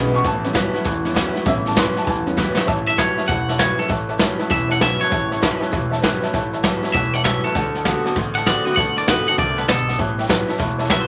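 A rowdy, rollicking rockabilly excerpt in A mixolydian at 197 BPM with a swung feel opens on a jangly, metallic tack piano solo over a riffing electric guitar through a small old amp, slightly broken-up with spring reverb, plus a picked steel-string acoustic guitar and a woody pizzicato upright bass sitting in the background. A brushed jazz drum kit with a boomy kick sits up front and plays a fill at 2.4 s, and at 2.9 s a bright, clean, compressed twangy electric guitar takes the melody. The harmony moves from A7 to D7 and back to A7 in a moderate club reverb.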